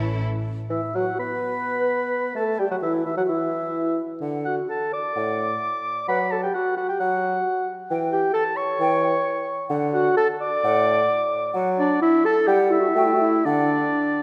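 Graceful and lively, this quick classical-period orchestral excerpt in D major moves at 130 BPM in 4/4 with a rubato feel, as an up-front smooth-topped oboe with light vibrato, a present clarinet, a mellow bassoon accompaniment with light vibrato and a hollow, tongued small flute group with vibrato sitting in the background all enter together at 0.7 s, bathed in a wet concert-hall reverb before the phrase settles back onto D near 13.5 s.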